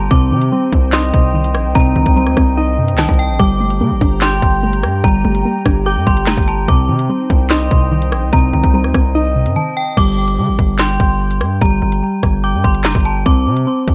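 Drill hip hop at 146 BPM in a half-time 4/4 feel, this dark, menacing cut from a longer piece sits over a chord loop moving between Cm and Gmadd9. Up front, a drill drum kit hits with a hard-clipped kick, sharp snare, crisp hats, handclaps, rim clicks and crash cymbal, all carrying a tape-warm edge, while a distorted 808-style bass lays down heavy, saturated low end with a fast attack. Soft electric-piano-like synth keys play mellow, airy arpeggios through chorus and digital delay. Above them, a metallic FM bell carries a second line with a ringing, inharmonic, warbling vintage tone. In the background, a soft round pluck and a glassy, ethereal FM pad with slow attack and long release fill out the harmony until both stop around 10.0 s, after a brief break at 9.6 s. From there the section drops the chords, leaving the drums, bass, keys and bell to carry the closing seconds in a digital ambience.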